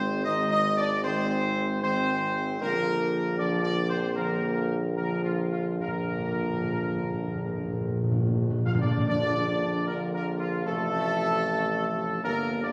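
A steady, straight 4/4 pulse at 76 BPM carries this majestic, triumphant classical fanfare, cut from a longer piece, moving from Ab to Bb in a Bb mixolydian setting before settling into Bb major at 9.1 seconds, with an F/A chord arriving at 10.7 seconds. Warm, up-front trumpets carry the melody over sustained chords from clear trombones with light vibrato and a mellow, distant French horn section, while a vintage-toned tuba holds the bass. Timpani struck with hard mallets add an articulate, close and dry fill from 5.8 to 9.1 seconds, set against the brass in a wet, roomy scoring-stage reverb.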